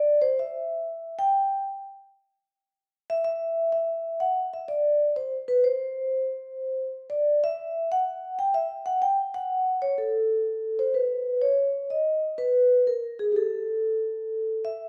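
A metallic, ringing vibraphone played with medium mallets and a slow motor vibrato carries this swinging, late-night jazz passage alone from start to finish at 14.9 seconds, its close, up-front tone set within the reverb of a large studio in a short section cut from a longer piece.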